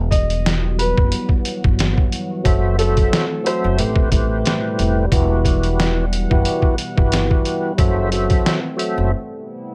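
Gritty and tough, this boom-bap hip-hop cut rides a compressed, pitched-down sampler-style drum kit with a thumpy kick up front, a woody pizzicato upright bass, and a deep, detuned sawtooth pad sitting low in the mix, while a polished upright piano carries the melody until 3.9 seconds and a fat, lightly overdriven tonewheel organ with key click and slow rotary speaker enters at 2.4 seconds, all set in a light reverb.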